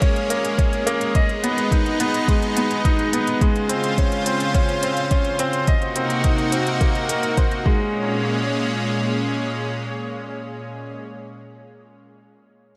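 A straight 4/4 pulse at 106 BPM from a soft, tape-warm electronic kick drum and crisp electronic hi-hat carries this melancholic, intimate piano and strings electronica in Bb minor, where a brilliant, woody upright piano riff with digital delay sits up front over a thick, detuned sawtooth pad of sustained chords with chorus and sidechain pumping, the drums falling away by 7.8 seconds as the harmony moves from Bbm7 through Dbmaj7 and Cm7b5 back to Bbm7, leaving pad and piano in light reverb until the pad stops at 11.0 seconds.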